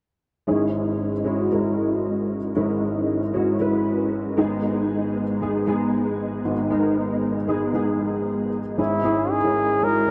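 Pop at 116 BPM in a straight 4/4, earnest and driving, opening at 0.5 s on an up-front upright piano with a woody, vintage tone, audible action noise, long sustain and an ensemble chorus, moving from C#m/G# to G#m. At 8.8 s a breathy flugelhorn takes the solo melody with light vibrato, a soft attack and a whispered, intimate quality. A huge ambient reverb with a 4.5-second decay soaks the mix in a dreamy wash, and this passage is cut from a longer piece.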